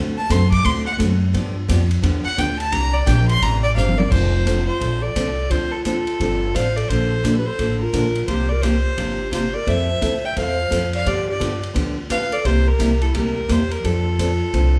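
A clear, earthy fiddle, bowed by a single player and sitting close, carries the melody in this down-home, swinging stretch of country western swing, cut from a longer piece and featured as a solo in the first section until 4.1 seconds. Underneath, a woody, thumpy upright bass played pizzicato on gut strings stands up front, while a picked steel-string acoustic guitar adds warm accompaniment. A vintage drum kit with a punchy kick and a rolled-off top keeps a natural studio-room sound across hi-hat, ride, crash and toms, and marks the turn into the second section with a fill at 3.8 seconds. At that same moment a dark clarinet enters as a second line, its jazz-style subtone and vibrato set back in the room. The band plays live together at 173 BPM with a swing feel in F major, moving through jazzy changes such as Dm7, Bbmaj9 and C7sus4, all wrapped in a moderate large-studio reverb.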